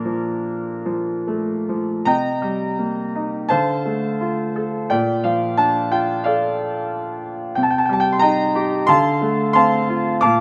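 A rubato 4/4 pulse drifting between 70 and 93 BPM carries this sunny, lyrical classical excerpt for solo concert grand piano, tuned to A4 = 435 Hz, its clear, open tone reaching from Bb2 to D6 with deep bass and long sustain, placed up front in a moderate recital-hall reverb as the harmony moves through Bbmaj7, Cm7 and Dm7, with a second section starting at 2.1 seconds.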